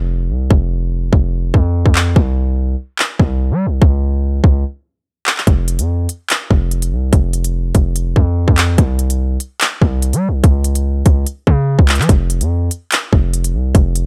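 A distorted 808-style bass opens this cold, menacing drill excerpt, its heavy sine tone carrying a noise layer, a fast attack and a decaying tail as it ranges from F1 to G3. The drill drum kit arrives at 0.5 seconds with a hard-clipped kick, crisp hi-hats and handclaps, and the opening stretch through 5.5 seconds plays as a break. The tempo is 145 BPM in 4/4 with a half-time feel, and the tuning sits at A4 = 436 Hz. Both the aggressive, saturated bass and the electronic, produced drums are placed up front. The sound is dry and gritty, with transformer saturation from a hardware recording, and a new section begins at 12.1 seconds before the clip ends.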